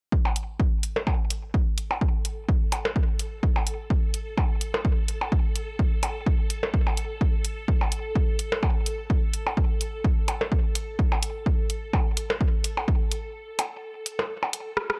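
A dry, punchy analog kick opens this sparse, quirky minimal techno excerpt at 127 BPM in 4/4, sitting up front with a slight swing on the 16ths. A punchy analog drum machine soon adds hi-hat and rim click, while up-front percussion blips, tape-warm and carrying a tape echo, play around the beat in a small room ambience. At 1.9 seconds a tense swarming drone on A4 fades in with a slow attack: a detuned, granular sine unison that sounds bright and evolving, bathed in its own reverb and shaped by sidechain pumping. The kick stops at 13.0 seconds and a short break follows, with the drum machine, blips and drone carrying on until a drum fill at 14.8 seconds. The whole recording has a dry, gritty hardware character set in a digital ambience.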